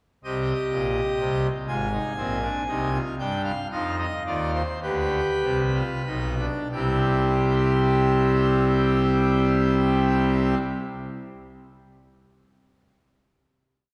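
A full pipe organ, with its mixtures drawn for a majestic, brilliant sound in a romantic voicing, carries this short, solemn yet driving baroque-style fugue alone, sounding from 0.2 to 10.6 s across a range from Ab1 to Ab5. Three voices weave in imitative counterpoint through an exposition in a broad 6/8, with the dotted-quarter pulse between 29 and 43 BPM and a steady slowing from the start until 8.8 s. The harmony moves from C minor through Ab and G7 before resolving at 6.7 s onto a sustained C major final chord that rings until the close. The organ sits up front in its voicing, though it is heard from further back in a church, where a long, wet reverberation of 2.6 seconds lends the counterpoint a grand, spacious halo.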